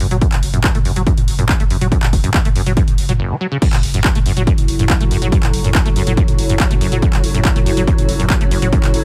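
The mix is dry, carrying a driving peak-time techno track at 141 BPM in a straight 4/4 and F# minor, with a hypnotic, dark mood in this cut from a longer piece. An overdriven electronic kick drum sits up front from 0.2 s, heavy and layered, alongside an overdriven techno kit of hi-hat, handclaps, toms and crash cymbal. A squelchy, resonant sawtooth acid bass plays the riff through ensemble chorus, sidechain pumping and dub echo, over a round, deep sub bass held on F#1 with overdrive, a low-pass filter and its own pumping. After a short break, the drop lands at 3.6 s on an F# minor chord. A swarming, detuned drone enters in the background at 4.3 s, and a cloudy, wave-folded granular pad follows, both bathed in their own reverb and pumping with sidechain.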